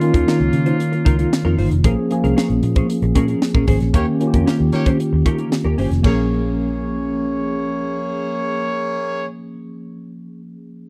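A straight 4/4 groove at 114 BPM drives this slick, nocturnal slice of polished 1980s jazz-funk pop in Bb dorian, with a crisp, up-front fusion drum kit (punchy kick, high-tuned snare, dark cymbals) and a round, foam-muted fingered bass anchoring the Db69 to Bbm7 to Eb7 changes until the drums stop at 6.2 seconds. A mellow tine electric piano and a dark, compressed semi-hollow guitar riff both shimmer with lush chorus, while a loose, vintage brass ensemble holds sustained chords with light vibrato only until 1.8 seconds. A tight, clear horn section enters at 3.9 seconds for a band accent, all set in the dry, close sound of a small studio room.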